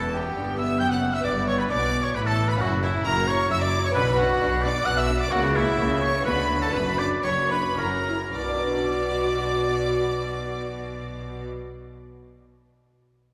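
In a straight 3/4 pulse moving between 104 and 134 BPM, this stormy, driving baroque-style concerto movement in B minor is cut from a longer piece, with a warm, roomy solo oboe up front carrying the melody alongside a smooth, rich violin section while a clear, focused second violin line sits in the background. Beneath them, a delicate fingerpicked lute with gut double strings, a background viola section, a distant, clear cello section and a rich double bass section fill out the accompaniment and bass, all bowed with vibrato except the lute. The music slows down from 4.6 to 8.4 seconds before a new section opens on B minor, and a long church reverb surrounds the ensemble.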